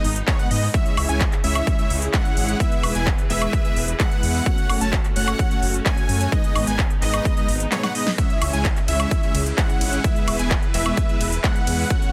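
A powerful, anthemic stretch of festival progressive house opens with a huge supersaw riff, a bold unison lead playing arpeggios with dub echo, a menacing detuned saw bass and lush bowed strings in the background, all pumping to the sidechain, while a crisp, overdriven big-room kit of claps, hats, ride, snare and woodblock drives underneath. A punchy electronic kick joins up front at 0.3 s, and a drum fill at 7.7 s pushes the chords back to C#m. The dry, heavily limited mix sounds dense throughout.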